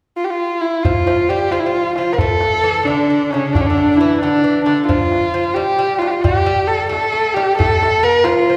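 Persian modal music in a longing, soulful mood, cut from a longer piece and moving at 89 BPM in a straight 6/8. A single bowed kamancheh carries the melody up front from 0.2 seconds, warm and expressive with vibrato and portamento, while a soft-handed tombak enters at 0.8 seconds with a tight, small-room tone. At 0.9 seconds a delicate fingerpicked nylon-string lute adds a lower second line on double strings, some octave-doubled, and a recital hall's long, wet reverb surrounds the ensemble.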